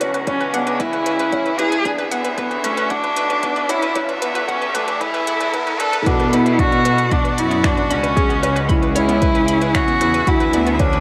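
Piano and strings electronica, melancholic and hypnotic, where a soft, felt-muted upright piano riff with audible action noise and delay sits among sidechain-pumped string quartet chords, a reedy, distant cello section bass, a bright background analog pluck arpeggio with chorus and delay, finger snaps and smooth hats from an overdriven electronic kit, and a quiet riser during the build-up, while an up-front bowed cello melody with vibrato enters at 0.3 seconds alongside a deep overdriven kick, all bathed in a huge ambient reverb, with the drop arriving at 6.1 seconds.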